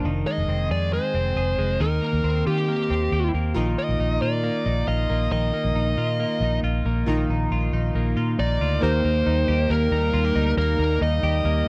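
Nostalgic and bright, this indie pop excerpt moves at 137 BPM in Eb major, built on twangy, compressed twelve-string electric guitar arpeggios with spring reverb and a round, foam-muted fingered bass sitting up front. A dark, distorted lead guitar carries a bluesy melody. Glossy pulse-wave synth keys with chorus return in the background at 3.5 s after a brief opening touch, and a hollow, flute-like pad with a slow attack, also heard at the very start, returns with sustained chords from 8.8 s as the harmony settles on Eb, all within a dry, close 1970s-style studio sound.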